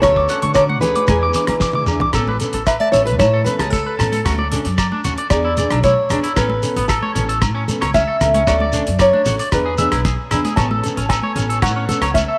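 A carefree, sunny highlife guitar band in A major at 114 BPM in 4/4 opens at once with a dark, jumbo fingerpicked steel-string acoustic guitar up front with tape echo, bright classical nylon-string fingerpicking, twangy, slightly broken-up electric guitar arpeggios also carrying tape echo, woody pizzicato upright bass, a dry 70s drum kit with fat snare and tight kick, ringing agogo bells, grainy shekere, damped high-tuned congas entering at 0.4 seconds, and a very quiet tonewheel organ on fast rotary speaker holding chords at the start and again from 10.6 seconds, before a drum fill leads into the steel-string guitar's solo at 2.1 seconds, the band sitting in a moderate echo chamber reverb over a repeating Dmaj7–E7–Aadd9 cycle.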